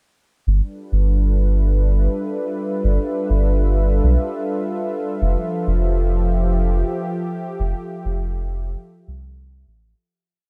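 A hazy, peaceful ambient dub piece opens at 0.5 s with a detuned sawtooth pad and a deep, round sub bass arriving together in a straight 4/4 groove at 101 BPM, centred on G mixolydian. The pad sits up front with a warm, smooth, nasal character, slow attack and long release, its sustained chords slowly shifting under a chorus effect. Beneath it, the soft bass blends triangle and square waves with a fast attack, playing a sustained dub-style line in the low register, also placed up front. The harmony moves from G13 to Fmaj7 at 5.2 s, framed by a digital ambience. A fade-out begins at 6.8 s and carries this short, complete piece to its close.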